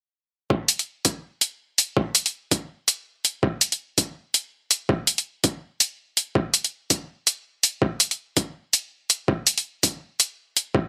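Half-time drum and bass with a dark, heavy mood and a swung sixteenth-note feel, cut from a longer piece. A gritty, pitched-down electronic kick drum with a thumpy, tape-warm character sits up front from 0.5 seconds, its small-room re-recording filtered of low end, while layered, bright electronic hi-hats with overdrive join at 0.7 seconds. The sound is dry and close, with little reverb.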